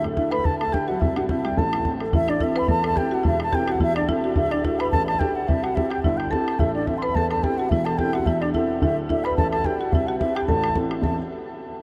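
A swung Celtic reel in 4/4 races along at 216 BPM in A dorian, its wild, dark and lively mood carried by a pure, wooden baroque flute with vibrato and a soft attack up front, while a buzzing marimba with medium mallets adds a dry second line beneath it. A dark, boxy baby grand piano with audible action noise and short sustain provides intimate, up-front accompaniment, and a damped, tight bodhran drives the percussion. The whole short excerpt, cut from a longer piece, sits in a vast, echoing space with a huge ambient reverb, its chords cycling through D, C and Am.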